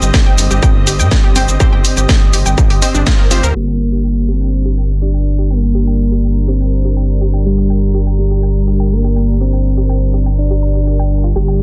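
A dense, heavily limited, dry mix with a dark low-pass tint opens this driving, melancholic melodic techno cut at 123 BPM in G minor. A distorted, up-front kick and a techno kit with cracking snare, hi-hat and shaker push over a gritty, saturated sawtooth bass, while a barely audible warbling analog drone hums beneath a thick detuned pad, a brassy background stab with chorus and delay, and a punchy detuned pluck arpeggio that all breathe with sidechain pumping over Cm/G. The kick drops out at 3.2 seconds and the rest of the drums by 3.5, and at 3.6 seconds the harmony moves to Gm as a round, octave-layered lead with vibrato enters, with filter sweeps on the lead and pad to the end at 11.6 seconds.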